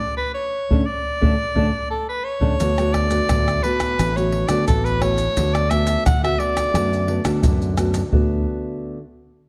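In a moderate recital-hall reverb, this playful, lively samba and choro cut at 87 BPM in D major opens with a breathy, whispered soprano saxophone carrying the jazz-style melody up front with light vibrato and scooped notes from 0.0 s, joined at 0.7 s by a thumb-plucked classical nylon-string guitar, a punchy, bright fingered electric bass through an envelope filter, and close, dry percussion of tight surdo, maracas, pandeiro and tamborim played with hard hands, with the guitar ringing on alone until 9.0 s.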